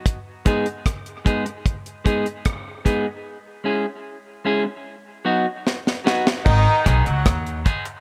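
A moderate spring reverb and a touch of studio ambience give this dub reggae excerpt a hypnotic, meditative air. A deep drum kit sits up front, dry with a tight kick, a high-tuned snare, rim clicks, hi-hat and crash, while a clean, picked electric guitar carries the accompaniment through dub echo and a high-pass filter over G#m, C#m and B. A filter sweep runs from 3.3 s to the end, and a drum fill arrives at 5.7 s. At 6.4 s a warm horn section enters, its light vibrato and roomy, distant tone passing through the same echo and filter, and at 6.5 s a woody, thumpy pizzicato upright bass with dark gut strings joins on G#m. Round, low-tuned bongos slip in very quietly in the closing moment before the cut.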